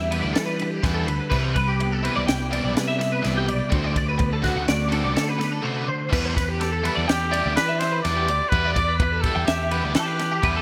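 Intricate and playful, this math rock and midwest emo passage in 5/4 opens with a twangy, chorus-laden twelve-string electric guitar spinning arpeggios up front. Beneath it sit a compressed clean electric guitar in the background, a punchy fingered bass, a biting, double-tracked overdriven guitar riff, and a dry compact cocktail drum kit with a high-tuned snare and dark cymbals. The clean guitar drops out at 6.1 seconds as the chords return to Em7, and at 6.6 seconds a clear trumpet with light vibrato and digital delay takes the lead, all set in lush hall reverb with bright 1980s-style digital production.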